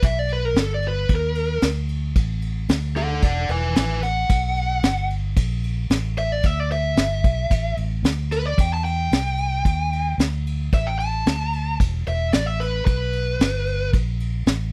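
A gritty, raunchy blues rock trio with a southern rock edge opens at once, with lead guitar, bass and drums all sounding from the first moment at a straight 112 BPM in 4/4. The guitar, pushed through a small cranked amp, plays an overdriven, picked solo with a dark, dirty bite, sitting between A4 and A5 and stopping at 13.9 seconds. Underneath, a vintage fingered electric bass, foam-muted and amped, gives a round, punchy low end from E1 to E2. The vintage kit is played with brushes in a small room, with dusky cymbals, a high-tuned snare, a tight kick and a rolled-off top, mixing crash and ride with snare and kick. The harmony moves through a restless string of chords, from Bmmaj7 and Gadd9 through power chords and suspended shapes, broken by brief gaps where the chords drop out. The dry, close, 1970s-style studio sound keeps all three players up front, and this cut from a longer piece ends as the bass lets go at 14.7 seconds.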